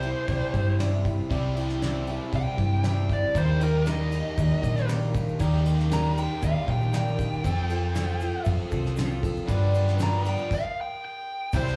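A straight 4/4 pulse at 117 BPM drives this hopeful, nostalgic slice of folk rock and heartland rock, cut from a longer piece and set over a C, Eb, F and G7 progression. A soft brush drum kit keeps time with a fat snare, tight kick, ride and crash, while a round, up-front hollow-body short-scale bass, picked and amped, anchors the low end. A boxy, woody ladder-braced acoustic guitar on old strings picks the accompaniment, and a biting, double-tracked overdriven guitar carries the riff, both touched with slapback echo. The dark, smooth lead guitar plays a solo across the whole span, overdriven and echoed, with a stop from 10.5 to 11.5 seconds. A grainy, very quiet egg shaker slips in at 3.4 seconds, and the whole performance comes across like a live gig heard through a club PA, with small-room ambience and a little reverb.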